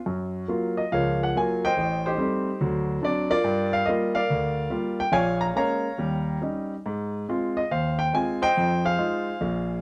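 Swung eighths with a loose, rubato give open this relaxed solo jazz excerpt, where a lone grand piano, up front, smooth and vintage in tone, ranges from low bass to the upper register through chords from Gbmaj7 to Fm7 in a moderate club reverb over a faint mains hum.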